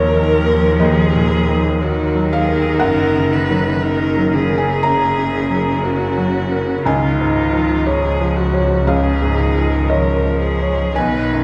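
A wet, reverberant space like a church or concert hall surrounds this short neoclassical passage, and its dulled top end softens the sound. Played rubato at 60 BPM in 4/4, the fragile, melancholic music moves from Ebm7 to Gb at 2.8 seconds and settles on Dbadd9 at 6.9 seconds. A felt-muted upright piano sits up front, mellow and intimate, its thin felt and audible action noise giving the accompaniment a private, close-up character across a range from B1 to Bb5. A single bowed viola adds a rich, expressive accompaniment with vibrato and portamento, while a solo cello carries a clear second line between Db3 and F3. A bowed double bass, focused and also played with vibrato, anchors the bass, and all four parts sound together for the full 11.4 seconds.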